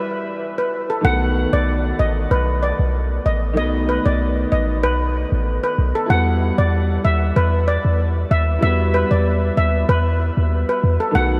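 Hypnotic and bouncy, this dancehall excerpt floats in a dreamy wash of huge reverb, where a shimmering, metallic steel pan, played up front with medium rubber sticks and trailed by a diffuse ambient delay, carries the melody over a boxy concert grand piano with long sustain and subtle chorus, while a clean, boomy 808-style bass with a fast attack and dark, decaying sine tone enters at 1.0 seconds as the harmony moves from Emadd9 to B7 and back to Emadd9 at 6.1 seconds.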